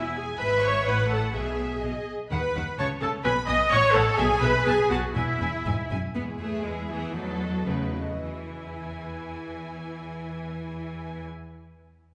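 Bathed in a wet concert-hall reverb, this restless, stormy fragment of a quick classical-period movement for string orchestra in E major moves in 2/4 at 104-130 BPM with a rubato feel, its distant, rich first violins carrying the melody over a close, warm second violin line, up-front smooth violas in accompaniment, and a bass of clear, intense cellos and lush, expressive double basses, all bowed with vibrato, before the music slows between 5.7 and 8.2 seconds and settles onto E at 8.2 seconds.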